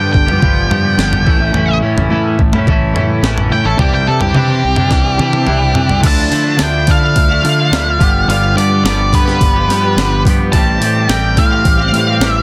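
An octave-fuzz lead guitar opens with a dark, distorted solo over a bright, twangy double-tracked twelve-string riff, a growly overdriven fingered bass and a gritty, pitched-up jungle sampler-style kit with a thumpy kick, driving a restless, moody indie rock excerpt at 107 BPM in D dorian through chords from G7 to Am7, with a drum fill from 4.9 to 6.0 seconds leading into the second section, all under light reverb and a dense, heavily limited master.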